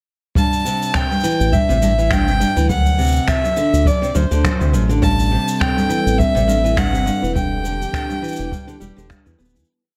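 A wistful, intimate folktronica piece at 103 BPM in A dorian, with a light 16th-note swing and a small-room glow. A rich, bowed violin with smooth vibrato carries the motif-based melody up front, sitting close over a fingerpicked steel-string acoustic guitar whose arpeggiated sequence catches the occasional finger squeak. A soft, boomy kick played with brushes anchors the groove alongside a clicking found-sound beat of cabasa and finger snaps set back in the mix. From 1.4 seconds a round, deep analog bass enters with a syncopated riff, and at 5.5 seconds a dark, warbling tape-like pad with chorus and its own reverb slips in behind, lending a nostalgic, lo-fi haze. The chords move from Am7 to D7 and back to Am7 before landing on Em7 as the whole piece fades out from 6.6 seconds.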